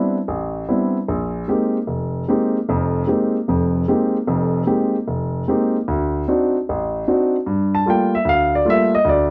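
Jazz excerpt for solo grand piano, swinging at 150 BPM in 4/4 with a searching, spiritual mood. The piano sits up front with a warm tone, ranging from a deep F1 in the bass up to A5. Suspended harmonies open the passage, moving from D13sus4 to Bb13sus4, then tighten into a tense D7b9 before settling on Gm9 at 7.5 seconds as a new section begins. A moderate small-room reverb gives the instrument a close, intimate space, and the overall production leans dark and warm. Cut from a longer piece, the fragment runs just over nine seconds.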